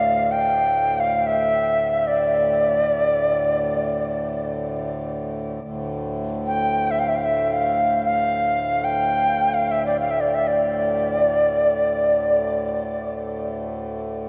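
An airy, woody cedar flute in the Native American style sits up front, its tongued notes carrying vibrato and trailing shimmer reverb and delay through a vast, echoing cathedral space. Beneath it, a hand-pumped harmonium holds a low, reedy drone with a breathing, boxy character, sounding on alone after the flute stops at 13.1 seconds until 14.3 seconds. Cut from a longer piece, this spacious, haunting world meditation music unfolds freely.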